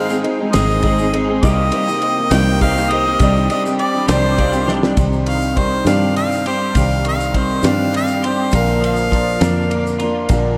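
Dusty and reflective, this slow 68 BPM folk and heartland rock passage in C minor and 6/8 sways under a dreamy wash of plate reverb, with a bright, up-front harmonica carrying the melody with light vibrato and scooped notes into a solo from 5.0 s, over a full-bodied jumbo acoustic guitar, a twangy, slightly broken-up electric guitar riff with ensemble chorus, a round, foam-muted fingered bass, a woody, slightly detuned upright piano in the background that stops at 5.0 s, a grainy, very quiet tube shaker and a damped 70s drum kit with a fat snare and dark cymbals that adds a fill at 4.7 s.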